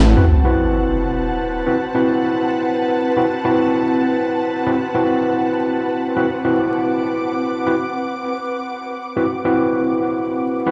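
This drum and bass fragment in A dorian moves in free time with a raw, frenetic mood. An ethereal pad of detuned sawtooth and triangle voices holds sustained chords from the start, its slow attack and long release softened by ensemble chorus and its own built-in reverb. Up front, an overdriven tine electric piano fires barky, gritty stabs through a combo amp, trailed by dub echo. At 0.2 seconds an electronic sub drop lands as an impact under an Am69 chord, ending at 1.7 seconds while the pad and piano carry on to the cut at 10.7 seconds. A moderate plate reverb and a large studio ambience give the sense of a big sound system playing in a bare room, with vinyl crackle laid over the whole.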